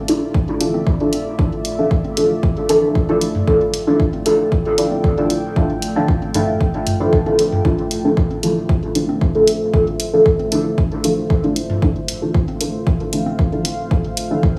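A deep, mellow chord stab sits up front in this dub techno excerpt, its soft, detuned tone colored by chorus and phaser, pumped by sidechain and trailed by dub echo as it repeats a single D minor add-nine chord at 115 BPM in a straight 4/4. Beneath it, a dark, moody pad holds sustained chords with a slow attack and long release, while a punchy electronic kick and layered hi-hat carry the beat. Overdriven electronic congas and toms sit in the background from 0.7 seconds, pumping and echoing through an echo-heavy mix with plate reverb for a nocturnal, meditative feel.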